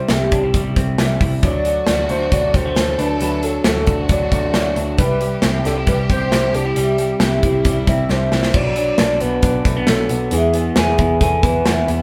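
Jangly indie pop at 135 BPM in a straight 4/4, this short cut from a longer piece feels nostalgic and youthful, with the band playing live in one room under moderate reverb. A warbling, detuned lead with a soft attack and portamento carries the melody through chorus and vibrato, while a slightly broken-up electric guitar through a small old amp plays lo-fi arpeggios beneath it. A bright, boxy twelve-string acoustic guitar shimmers in the background with its octave-doubled strings, and a dark, round, foam-muted electric bass anchors the low end. The up-front drum kit brings bright cymbals, a medium-tuned snare and a tight kick, with a fill from 8.1 to 8.5 seconds leading into a new section. A distant, lush violin section adds an expressive bowed second line from 1.4 seconds until 8.5 seconds, as the chords move from C and D to B minor and E.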